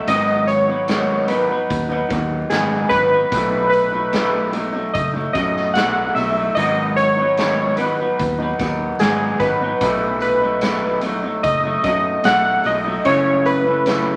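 Warbly lo-fi synth keys carry the melody up front, their detuned pulse and sawtooth tones thickened by chorus and a ring-modulated edge, giving this lonely, hazy bedroom-pop excerpt at 74 BPM its nostalgic glow. Beneath them, a twangy, slightly broken-up electric guitar through a small old amp drifts in pitch, while a punchy, foam-muted picked bass and a gritty, saturated garage drum kit with a rolled-off top hold a straight 4/4 over G#m7 and B7, landing on F#m7 at 13.1 s. A jingly, very quiet tambourine sits far back, and the whole piece is wrapped in moderate studio reverb and vinyl crackle.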